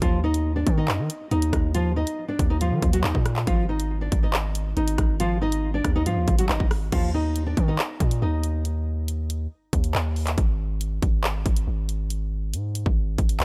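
Soaked in digital ambience, this cold, tense half-time hip hop drill excerpt sets a thumb-plucked classical nylon-string guitar melody up front over deep, sine-toned 808-style bass with a fast attack and long decay, plus an electronic kit of hard-clipped kick, bright hi-hats, handclaps, rim clicks and crash, until the guitar stops at 8.6 seconds and leaves the bass and drums.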